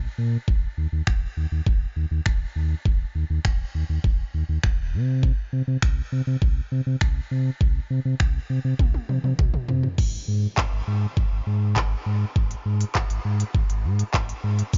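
Confident yet bittersweet, this dance-pop passage is cut from a longer piece and moves at 101 BPM in a straight 4/4 in C minor, tuned slightly flat to A4 = 439 Hz. A deep, full sub bass doubled at the octave opens the clip, its sine tone sustained with a fast attack and pumping from sidechain compression as it spans Eb1 to C3. The pop drum kit arrives at 0.5 s, electronic and layered, pairing a knocking kick and crisp hi-hat with finger snaps, handclaps, shaker, toms and crash cymbal, and the kit carries a tape-warm polish. A drum fill from 8.8 s carries the music into a new section at 10.0 s. Bass and drums both sit up front in a digital ambience whose top end stops at 7.5 kHz, giving the sound a rounded, muted ceiling.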